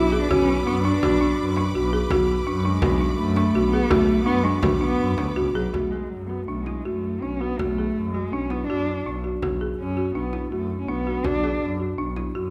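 A bowed, dark cello sings the melody with vibrato and portamento over clear string-section chords, a woody, rustic marimba's arpeggios, a bowed double bass and a deep frame drum sitting in the background, all in a restless, hypnotic contemporary chamber piece in an uneven 5/4. The strings' intense, close sustain drops away at 5.7 seconds as the harmony moves from Bm to Bm7, leaving the expressive cello up front until it stops at 11.6 seconds. The hardwood marimba and upfront bass carry on to the end of this cut from a longer work, with the hard-handed drum stopping just before, all bathed in the wet reverb of a recital hall.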